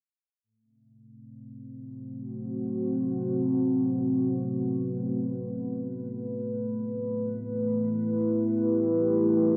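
A moderate plate reverb with a 2.5-second tail wraps this short ambient fragment, cut from a longer piece, in a deep, hazy atmosphere. It moves in free time in A dorian, with its single part, a dark ambient pad, entering at 1.5 seconds and sitting up front in the mix. The pad's sound is built from detuned sawtooth voices in unison blended with a sine sub octave, thickened by chorus and its own reverb, giving it a moody, shadowy weight. Its slow attack and long release let the sustained chords bloom and linger across a range from A3 to B4. The harmony rests on Am69 before shifting to G69 at 6.2 seconds, holding that color until the fragment closes at 9.6 seconds.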